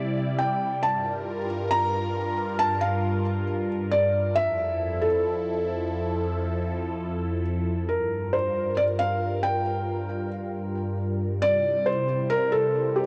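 A felt-muted upright piano carries the melody up front, its soft, intimate tone carrying audible action noise, 12-bit sampler grit and a digital delay, in this eerie, glitchy IDM piece in G dorian at 136 BPM with a 16th-note swing. Beneath it, a phased analog pad holds swirling, detuned sawtooth chords with an airy noise layer, slow attack and long release, coloured by phaser, chorus and the same sampler grit. Both parts sit in a huge ambient reverb as the harmony moves from Gm7 to Fmaj7, and a new section begins at 7.9 seconds in this 13-second fragment of a longer track.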